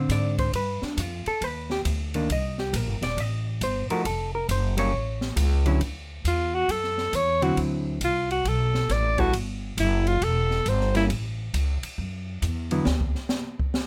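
Closely miked with light reverb, this playful, swinging excerpt of small-group swing and bop sets a clean, dark-toned hollow-body electric guitar and a woody pizzicato upright bass up front over an acoustic drum kit with a high-tuned snare, boomy kick and dark cymbals, before a breathy alto saxophone with light vibrato and subtone takes a solo from 6.3 seconds and the drums close with a brief solo at 12.9 seconds.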